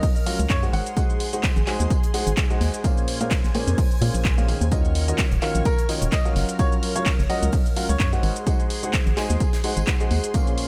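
Piano house with an energetic, bittersweet mood, built on a swung groove where a punchy, up-front electronic kick, an analog drum machine's cabasa, handclaps and hi-hat, and a gated 80s kit's hi-hat, snare and tambourine in a bright stone room set the pulse beneath a hollow, dark, organ-like FM bass with tube saturation and sidechain pumping. A woody upright piano riff with short sustain pumps through analog delay across chords moving from Gbmaj7 through Ab7, Bbm9 and Ebm9, while a shimmering vintage string machine of violins holds soft, sustained chords in the background. A brilliant baby grand piano carries the melody with long sustain and delay in brief phrases, first from 0.0 to 1.2 seconds and again from 5.7 seconds, all within an echo-heavy mix.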